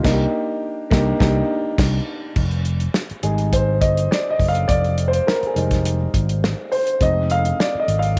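This fragment of a longer piece opens with a band accent on a Cm9 chord, with a dark baby grand piano, fingered electric bass and a damped 1970s drum kit all striking together. The style is lush 1970s soul in F dorian at 103 BPM in 4/4, with a light swing on the sixteenths and a bittersweet, cinematic mood. At 2.4 seconds the harmony moves to Fm7 and the piano takes a solo, while bass and drums keep playing beneath it to the end at 8.2 seconds. The piano sounds mellow, boxy and intimate, with short sustain and audible action noise. The bass is round and amped, and the dry drum kit has a tight kick, a medium-tuned snare, hi-hat and a dark crash with a rolled-off top. All three parts sit up front in a studio room with light reverb.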